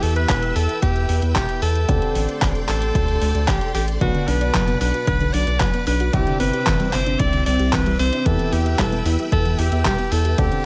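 A straight 4/4 pulse at 113 BPM drives this bittersweet, melodramatic italo disco excerpt in E minor, where a punchy, tape-warm electronic kick and an overdriven, sampler-style drum machine's handclaps and hi-hat sit beneath a deep, round analog bass, a lush vintage string machine holds sustained chords through ensemble chorus, a dark, mellow concert grand piano adds stabs in the background, a soft pluck joins at 4.0 s with chorused, delayed arpeggios, and an edgy, present alto saxophone leads with scooped notes through digital delay, all under light digital ambience and vinyl crackle.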